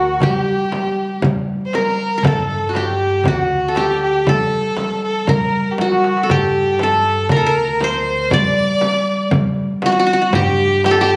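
Passionate and festive, this Arabic maqam ensemble excerpt moves at 118 BPM in a straight 4/4 in G maqam nahawand, tuned to A4 = 437 Hz. Up front, a plectrum-plucked qanun with bright-edged triple strings carries the melody, while a single biting, intense violin with vibrato and an airy bow plays a second line. Beneath them sit a woody, dark pizzicato upright bass on gut strings, a crisp metal-shell darbuka in the background and a deep, dry frame drum played with hard hands, with a drum fill at 5.8 seconds, all heard through a phone in the room with moderate recital-hall reverb and a club-like ambience.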